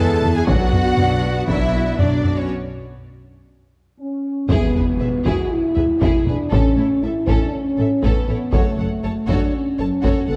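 This epic orchestral film-score excerpt moves at 119 BPM in a majestic, adventurous mood, with up-front, mellow French horns holding sustained chords over bowed, vibrato-rich cellos and focused double basses while a distant violin melody and a lush background second line and viola accompaniment fill out the strings through a progression of Bm, E, A and F#m. A clear woodwind section adds soft-attack chords until 2.5 s, hard-stick taiko drums with a vintage, band-limited sound drive the piece from 0.2 s, and at 4.5 s a huge, dark impact lands alongside very quiet, round timpani as the second section begins. A moderate scoring-stage reverb gives the whole a dark production.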